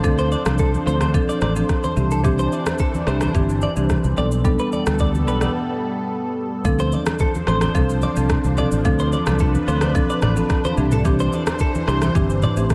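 A straight 4/4 afrobeats groove at 109 BPM drives this mellow, sultry clip from a longer piece in D dorian. An electronic afro-pop kit sits up front, its knocking kick, rim click, shaker and toms roughened by overdrive and the tight colour of a small room, while quiet congas with a thin, bright skin add soft-handed patter underneath. A round, dark fingered electric bass anchors the low end as a woody rosewood marimba plays mid-forward accompaniment over chords moving from Dm7 through Cadd9 and Gadd9/B. A thick, detuned unison pad holds sustained chords with a slow attack and long release, shimmering through chorus and phaser and pumping with sidechain compression. From 0.2 seconds a twangy, compressed clean electric guitar picks a high riff, dressed in lush chorus and analog delay. A short break at 5.5 seconds leads into the second section at 6.6 seconds, and a moderate hall reverb with digital ambience bathes the whole mix in a dreamy haze.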